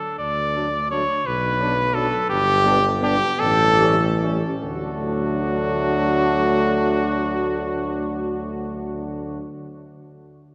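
Classical brass quintet music in D major and 6/8, a stately passage cut from a longer piece, moving at a rubato 47-58 BPM and slowing down through its first 4.6 seconds, where a clear cornet carries the melody up front with light vibrato over a mellow tuba bass, while a dark trumpet second line and soft-attack French horn and vintage-toned trombone accompaniment sit in the background, all entering by 0.6 seconds and bathed in a long, wet church reverb as the harmony moves D, Bm, G, A7 and back to D.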